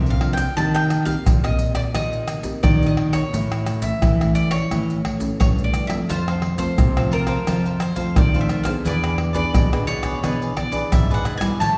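Two warm nylon-string guitars open this yearning, nostalgic samba-choro excerpt at 87 BPM, one fingerpicking classical accompaniment and the other thumb-plucking the bass, as a bright, double-strung bowl-back mandolin picks the melody over a close, dry, up-front bed of hard-handed maracas, pandeiro, tamborim and deep surdo, with a crisp cavaquinho joining the accompaniment at 6.1 seconds, all set in a wet recital-hall reverb.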